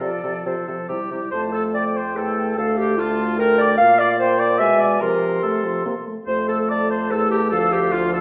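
Classical-period wind quintet music, a spirited and lively fragment of a quick F major movement in 3/4 at 145 BPM with a rubato feel, where a pure, vibrato-touched concert flute carries the melody over a soft-attacked oboe second line, a dark, distant clarinet and a punchy, present French horn in accompaniment, and a mellow bassoon bass, all five playing throughout the 8.2 seconds in a wet recital hall reverb, with chords moving from F/C and C through Dm, Bb5 and E7/B to Am/C and back to Dm.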